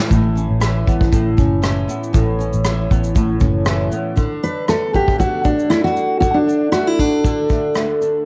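Heartfelt and carefree, this short acoustic pop excerpt swings gently in 4/4 as a double-tracked flamenco guitar, fingerpicked with audible finger squeak, picks out accompaniment over a soft brush drum kit with a tight kick, rim click, shaker and medium-tuned snare set in a distant, roomy space. A dark, round, foam-muted electric bass adds punchy low notes until 3.9 seconds, and at 4.4 seconds a full-bodied jumbo steel-string acoustic guitar takes up the fingerpicked melody, sitting a touch louder than the rest. The whole has the intimate feel of a home cassette recording in a small room with light reverb, with tape colouring the flamenco guitar and drums.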